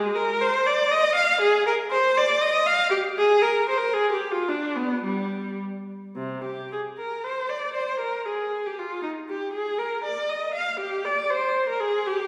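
A single bowed viola carries this grave, flowing baroque-style suite movement in C minor, its rich tone shaped by vibrato, portamento and expressive rubato across a range from C3 to F5. The movement sits in 3/4 at 102-121 BPM, stating its opening section and then returning to it at 6.2 seconds in this 12.3-second passage cut from a longer piece. The viola sits up front yet carries a distant quality, bathed in the wet reverb of a recital hall or church.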